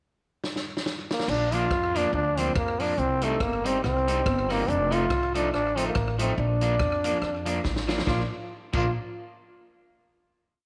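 A swung ska beat at 141 BPM bounces along in Bb major, with the vintage drum kit opening on a fill at 0.4 seconds before settling into a side-stick backbeat with a punchy kick and slapback echo. The growling trombone enters up front at 1.1 seconds with a raspy, gritty, motif-based melody of call phrases full of scooped notes and vibrato, while the upright bass walks with woody, thumpy slides and the slightly broken-up electric guitar chops twangy off-beats through its own slapback echo. This short, cheerful piece sits in a moderate echo chamber reverb, and a second drum fill at 7.6 seconds leads into the final chord.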